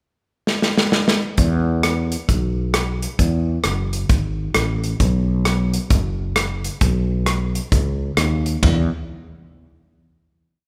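A moderate recital-hall reverb surrounds this short, complete honky-tonk and classic country piece, giving it the open ring of a church or concert hall. The mood is sunny and easygoing, moving at 132 BPM in 4/4 with a swung eighth-note feel in E major. A natural country drum kit starts at 0.5 seconds with a fill through the pickup bar, then settles into an up-front country two groove of hi-hat, kick, ride, rim click, snare and toms, with a medium-tuned snare and a tight kick. At 1.4 seconds a fretless electric bass joins for the interlude, growly and direct-amped, playing a two-beat root-and-fifth line with walk-ups in its low register. The pair carries the tune to a final note arriving at 8.6 seconds.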